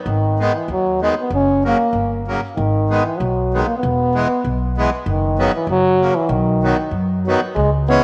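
Opening at 0.1 s, a clear euphonium with light vibrato carries a classical-style solo melody over woody, growly pizzicato upright bass on steel strings, joined at 0.4 s by reedy accordion accompaniment, the three parts up front in a bouncy, festive alpine folk dance-band cut at 96 BPM in lightly swung 2/4 and B major, moving from G#m through F#, E and F#sus4 to B, all in a moderate plate reverb.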